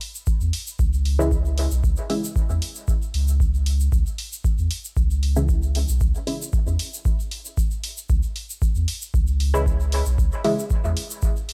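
A muted, detuned sawtooth chord stab with chorus, phaser, 12-bit sampler grit, dub echo and sidechain pumping surfaces at 1.2, 5.4 and 9.5 seconds in this nocturnal dub techno excerpt, sitting up front over a steady straight four-beat pulse. Underneath, an analog electronic kick thuds deep and forward, a clean, smooth sine sub bass carries transformer saturation and pumps under sidechain compression, dark layered hi-hats tick quietly, and a grainy, bright egg shaker sits far back in the mix. The whole track sounds like a dry, gritty hardware recording with transformer saturation and a digital ambience.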